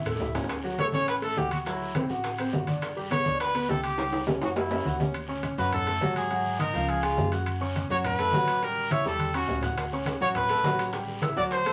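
Salsa with a sunny, festive mood, this fragment of a longer piece is led by a bright, punchy trumpet playing an up-front, pop-style solo with scooped notes, beside a clear, intimate grand piano whose action noise and long sustain sit close to the listener. Underneath, a woody, thumpy pizzicato upright bass on gut strings anchors low-tuned, thick-skinned congas played with soft hands, ringing metal-shell timbales, a raspy guiro and very quiet, grainy maracas. Tight, high-tuned bongos sit in the background, dropping out at 5.0 seconds and returning at 9.8 seconds, while drum fills mark the turns, all set in a wet studio reverb with vinyl crackle over the top.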